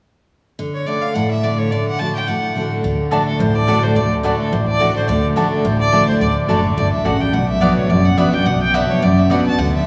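Bluegrass, joyful and lively at a brisk 213 BPM in D major with a swung feel, opens at 0.6 seconds with bright, full-bodied picked acoustic guitar up front, joined at 0.7 seconds by a rich, intense bowed fiddle carrying the melody with light vibrato, before a dark, woody pizzicato upright bass joins at 2.8 seconds and mellow mandolin stabs follow at 3.1 seconds, the chords moving from D to Bm in a cathedral-like reverb that suggests a church or concert hall, in this short cut from a longer piece.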